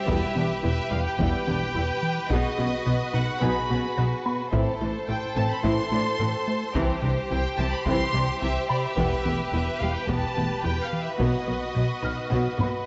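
Cinematic hybrid orchestral and electronic film score, tense and futuristic, where a rubbery, bouncy square bass riff and heavy-stick taiko drums drive beneath lush vibrato violin sections, a background viola section, a very quiet cello section, a focused double bass section and soft-attack French horn chords, while a woody, mallet-like synth pluck arpeggiates through chorus, phaser and delay, a dark, boxy felt-muted upright piano adds delayed texture, and a drum fill at 12.6 seconds closes this cut from a longer piece in a moderate scoring-stage reverb.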